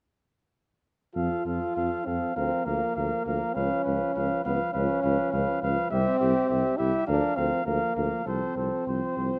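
Stately and warm, this brass quintet passage moves with a rubato feel in 4/4, cut from a longer classical piece. An up-front cornet carries the melody with vibrato and a soft attack above a mellow trumpet second line, while a clear French horn enters first at 1.1 s, a breathy, vintage-toned trombone with light vibrato sits in the background, and a soft-attacked tuba bass sounds up front yet distant and roomy. Close, detailed microphones and light reverb frame the harmony as it passes through a Db7 chord before settling on F over C.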